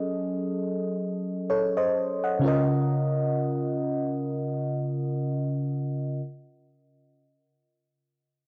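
R&B fragment with a dreamy, tender mood, carried entirely by a mellow FM electric piano that plays accompaniment from 0.0 to 6.2 seconds, moving from a Gbm6 chord to a Db69 at 2.4 seconds. The piano sits up front with a soft, round, dark tone, a fast attack that decays, a chorus shimmer and a noise layer. Light reverb and the cassette tape character of a home recording give the short passage an intimate, hazy feel.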